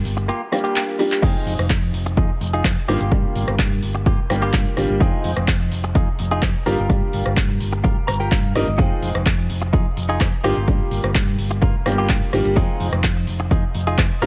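A dry, close-sounding mix frames this short cut from a longer filtered disco house track, running at 127 BPM in a straight 4/4 and sitting in F dorian with a nostalgic, funky mood. A bright grand piano with a brilliant, open tone and short sustain carries the accompaniment from the first moment, treated with phaser, sidechain pumping and a low-pass filter. Beneath it, a hollow-body short-scale fingered electric bass gives a dark, round, amped low end, also pumping and filtered. A punchy analog drum machine adds crash, handclaps, hi-hats and rim clicks with a tape-warm, small-room character. After a drum fill, an up-front electronic kick arrives at 1.2 seconds. A clean, compressed electric guitar, picked and recorded direct, plays a riff through spring reverb and steps forward with a fill at 7.8 seconds, all over chords that alternate between Gm7 and Fm7.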